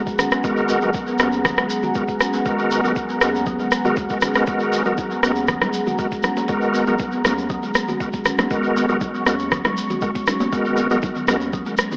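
Earthy and hypnotic, this afro house excerpt moves at 119 BPM in G# minor, resting on a single G#m9 chord as a reedy, key-clicking tonewheel organ with fast rotary speaker sits up front with stabs, over a moody, detuned sawtooth pad, a round, nasal analog bass in the background and a deep electronic kick, all breathing with sidechain pumping except the kick. A woody, ringing kalimba plays arpeggios alongside a grainy shekere and a produced afro-pop drum kit with rim clicks and toms, while very quiet, hard-hand congas join at 4.5 seconds. Tape echo on the organ, kalimba and shekere, spring reverb and a lo-fi AM radio tone give the mix a hazy, echo-drenched character.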